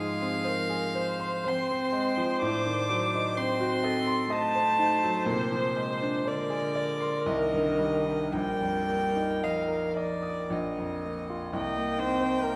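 A sul tasto violin carries the melody up front with a pure, floating tone, while a distant cello traces a soft second line beneath it in this serene, tender slow romantic movement for piano quartet in 3/4, shaped with a gentle rubato. A viola adds intimate, close accompaniment with an airy bow and light vibrato, and a clear concert grand piano with a deep bass supports the strings, all set in a wet scoring-stage reverb. Cut from a longer piece, the passage moves through Fm/Ab, Adim7 and Bb9 before shifting into a new section at 11.5 seconds on Cm7.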